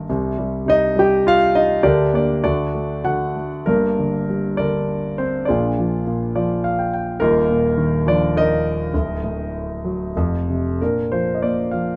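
Heard in a moderate studio reverb, this short classical excerpt features a solo concert grand piano with a warm, up-front tone and deep bass, playing a lyrical, sunny line in a rubato three-four that moves from Cm through Gm/D, Bb7 and Ebsus2, adds a brief fill at 6.1 seconds, and turns to Bb as a new section opens at 10.8 seconds.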